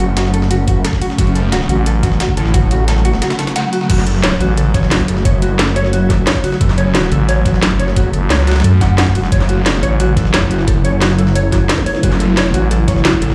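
A growling FM bass snarls up front in short bursts from 1.7 seconds and holds its longest stretch from 7.1 to 10.3 seconds, cutting through this dark, aggressive slice of technical drum and bass in a straight 4/4. Beneath it a thick, detuned saw bass rumbles throughout, saturated and chorused and pumping against the kick. The overdriven electronic kick knocks, and a layered drum kit adds a cracking snare, metallic hats and crash cymbal, while a gritty, compressed breakbeat kit sits very quiet beneath them. A swarming, tense drone of sustained chords evolves slowly in its own reverb, and a mellow, clean electric guitar fingers dark arpeggios through delay, both breathing with the sidechain pumping. A brief pause in the groove arrives at 3.2 seconds, and a small electronic zap flickers in the background near the end, all set in a big, reverberant room sound.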